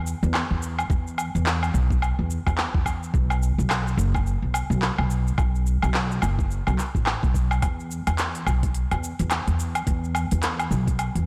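Meditative and mystical, this organic downtempo fragment with a swung sixteenth-note feel sets a woody, dark, up-front pizzicato upright bass on steel strings, colored by tube saturation and sidechain pumping, beside a crisp, up-front organic electronic kit of handclaps, hi-hat, shaker and woodblock, with a soft, tape-warm electronic kick entering at 0.9 s, all in a blown-out, overdriven recording with light reverb.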